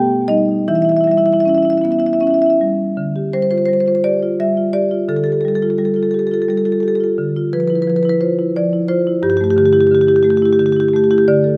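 Reflective and hypnotic, this short cut from a longer contemporary classical piece for solo marimba moves in a rubato 6/8 at roughly 51-59 BPM in dotted quarters. The marimba, played with medium mallets, sounds woody and up front as it spans G2 to G5, drifting from Baug and Em6 into a second passage at 3.0 seconds built on F69/D, Dmadd9 and Gsus2. Close, detailed microphones catch the rosewood bars while a moderate concert hall reverb of 2.1 seconds lets each chord linger.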